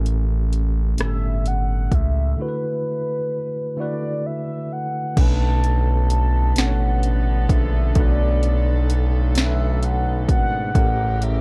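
Yearning and sultry, this slow six-eight R&B excerpt pairs a worn, slightly out-of-tune tine electric piano, lightly overdriven, with a smooth sawtooth synth bass and an up-front, overdriven electronic drum kit whose soft kick, sharp snare, hats, rim click and crash sit dry in a dark production. From 1.0 seconds a round, horn-like synth lead with chorus and vibrato carries the melody, a break runs from 2.4 to 5.2 seconds, and at 5.2 seconds a distant, reedy string section enters with bowed, gut-string chords.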